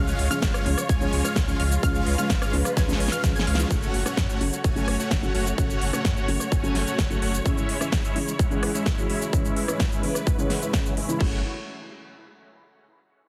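A punchy, up-front electronic kick drives this euphoric, powerful festival progressive house excerpt at 128 BPM in F# minor, beneath a huge detuned supersaw riff that gets a filter sweep from 3.7 seconds, a crisp-hatted big-room kit with a massive snare, a saturated sub bass that drops out at 7.4 seconds, a lush pluck arpeggio that stops at 3.7 seconds, a soft felt-muted upright piano with dub echo, and dark bowed symphonic strings, with sidechain pumping on the melodic parts and bass, all under heavily compressed, radio-style polish.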